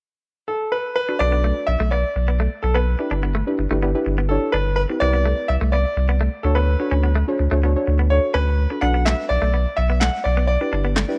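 A brilliant, up-front concert grand piano carries the melody in this bittersweet yet confident dance-pop fragment, over nasal, dark chorused chord stabs, a twangy clean guitar riff with lush chorus and a round, deep sub bass, with a punchy overdriven electronic snare and handclaps joining at 9.1 s, all wrapped in light reverb and a worn, warbling cassette-tape pitch drift.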